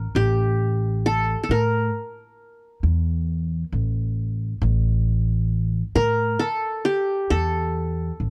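A dry, close 1970s-style studio sound frames this short, longing and soulful Arabic maqam ensemble passage in a straight 10/8 at 134 BPM in eighths, where an up-front, bright-edged qanun with triple strings, plucked with fingerpicks, carries the melody between G4 and Bb4 while an up-front, woody pizzicato upright bass on steel strings holds the low line from A1 to A2 throughout the 8.3 seconds.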